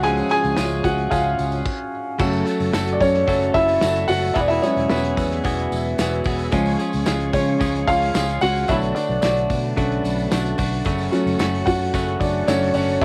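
A felt-muted upright piano leads this driving, earnest piano-driven pop excerpt, its soft, mellow tone sitting up front with audible action noise and a cassette-tape color. After a brief stop between 1.7 and 2.2 seconds, the piano carries on through chords that move from C# to F#m, Eadd9, C#, Bm7 and back to F#m. A clean, compressed electric guitar, recorded direct and picked, plays a riff that shares that tape character, while a fingered electric bass gives a round, punchy, dark low end. A loose indie drum kit with a punchy kick, medium-tuned snare, hi-hat and dark crash cymbals keeps a straight 4/4 feel in a small-room sound. A very quiet tonewheel organ holds sustained chords through a slow rotary speaker with chorus vibrato, and a jingly, distant tambourine sits in the background, all framed by light reverb and the small-room ambience of a home cassette recording.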